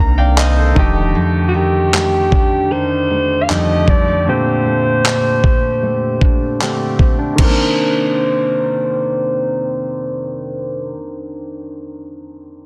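Contemporary R&B in a sensual, longing mood, this short cut from a longer piece moves at an unhurried, straight pulse in 4/4. It opens with a concert grand piano fill over a deep, boomy 808-style bass that sounds only until 1.1 seconds, while a very quiet electronic downlifter falls away and a filter sweep shapes the first section. A full-bodied nylon-string guitar plays fingerpicked arpeggios through a low-pass filter and digital delay, with audible finger squeak, alongside the open, clear piano accompaniment as the harmony moves from Cm9 to F13 to Bbmaj13 and back to Cm9. A gritty, sampler-style drum kit sits up front with a thumpy kick, handclaps and crash cymbal, dropping out at 7.6 seconds, just after the second section begins at 7.4 seconds. The breathy alto saxophone carries the melody from 1.5 seconds, played up front in a vintage jazz style with subtone and scooped notes, softened by a low-pass filter. 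Light reverb and a small room ambience surround the parts in a dense, heavily limited modern master.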